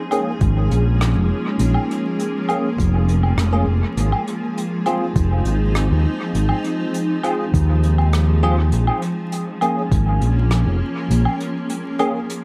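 A round, overdriven fingered electric bass sits up front in this hazy, deep ambient dub at 101 BPM in Bb minor, alongside a soft, tape-warm electronic kick in the background, a blurred granular cloud pad holding sustained chords in its built-in reverb, a bell-like tine electric piano playing clean stabs with ensemble chorus and dub echo, and an airy jazz brush kit of hi-hat, rim click and woodblock that also carries dub echo, all moving over Bbm7 and Ab6 chords amid light small-room ambience and vinyl crackle.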